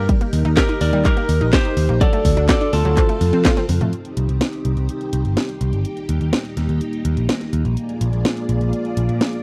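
A straight 4/4 pulse at 125 BPM drives this bittersweet, danceable italo disco excerpt, where a punchy electronic kick and a house kit with a cracking snare, handclaps, hi-hat and toms sit up front alongside a tube-saturated picked electric bass, while a slightly broken-up lead guitar with tape echo carries the melody and a chorused analog pluck arpeggiates in the background until a band accent at 3.5 seconds and a drum fill hand off at 3.9 seconds to a section where the lush, grainy string machine chords and the bass continue under the kit, all in a dry, close 1970s-style room with light reverb.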